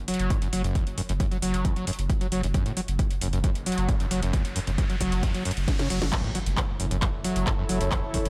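Dark and hypnotic, this short cut from a driving peak-time techno track in F# minor runs at 134 BPM in a straight 4/4, built on a deep, saturated sub bass, a punchy, tape-warm analog kick and a layered kit of cracking snare, handclaps, metallic hats and crash, with sidechain pumping on the bass, hats and cymbals. Up front, a screaming, squelchy sawtooth acid line ranging from E2 to F#3 carries distortion, subtle chorus, digital delay and a resonant filter sweep. A background riser from 3.4 s and a drum fill lead into the drop at 6.1 s, where an impact lands on F#m; shortly after, at 6.8 s, a blurred, evolving granular cloud pad with its own reverb enters over an otherwise dry mix.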